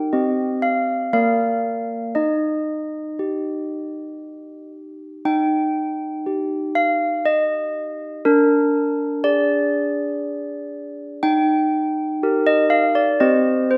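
Festive yet serene, this short classical passage for handbells, taken from a longer piece, moves in an unhurried three-beat lilt. The handbells play alone from start to finish, ranging from Bb3 to G5 with a clear, ringing tone, dark and smooth under medium clappers and placed up front in the mix. A lush scoring-stage reverb lets each strike bloom, as a phrase heard twice drifts from C minor through Bb and Bb7/D to rest on Eb before a final turn back to C minor.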